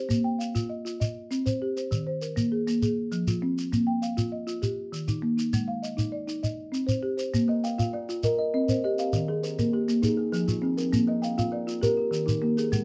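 Rippling and hypnotic, this short cut from a longer southern African traditional piece moves in a straight 12/8 at 133 BPM in Bb mixolydian, where a woody, round folk marimba with soft mallets spins mbira-style arpeggios from the start, a grainy, close shekere keeps time just after, and a hollow, ringing kalimba with a fingertip pluck joins the interlocking cycle at 7.5 seconds, all under a light reverb.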